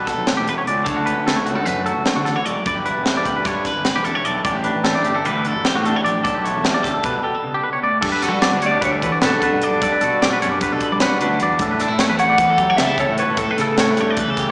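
Intricate and wistful, this math rock and midwest emo piece moves at 302 BPM in eighths through an odd 9/8 metre with a straight feel, set in G lydian and cut from a longer piece. A picked, clean electric guitar lays down chords while a twangy, compressed, fingered electric guitar spins arpeggios up front, both carrying slapback echo, over chords that circle G69, Dmaj7 and A9sus4. Underneath, a fingered electric bass with round, overdriven fuzz holds the low end, and a polished fusion drum kit with a high-tuned snare, punchy kick, dark cymbals and hi-hat sits up front. The harmony opens onto Gmaj9 at 8 seconds, and shortly after, at 8.7 seconds, a slightly broken-up, lo-fi electric guitar through a small old amp takes the melody with slapback echo, playing until 14.1 seconds. The whole thing sounds like a live gig heard through the venue's PA, with light reverb, recital hall reverb and a small-speaker quality.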